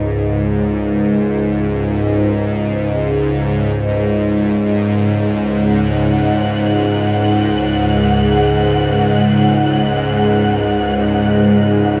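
Dark ambient drone, cavernous and desolate, cut from a longer piece: a tense, string-like bowed drone sits low and up front from 0.0 s, its bright, detuned sawtooth body edged with ring modulation, vibrato and a slow, sustained swell into long release. At 5.5 s a breathy, wind-like tuned noise texture drifts in high above it, mellow and airy under its own shimmer reverb. The whole recording floats in a huge, wet reverb and carries the worn, warbling pitch drift of old cassette tape.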